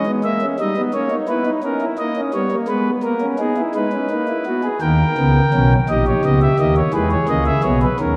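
Moving in a steady, straight compound metre of twelve eighths to the bar, this short passage cut from a longer work is a baroque-style classical fugue in four parts, serious and driving in mood. A single pipe organ plays alone throughout, sounding its principal stop with a smooth, warm baroque voicing, a touch of chiff, and a placement up front in the mix. The four voices range from A#1 in the depths to G5 at the top. The harmony opens on A#m7b5 and passes through D#7/G and G#m before a new section begins at 4.8 seconds, moving to D# and then E. A long, wet church reverb with a 3.5-second decay surrounds the organ, giving the counterpoint a spacious, resonant setting.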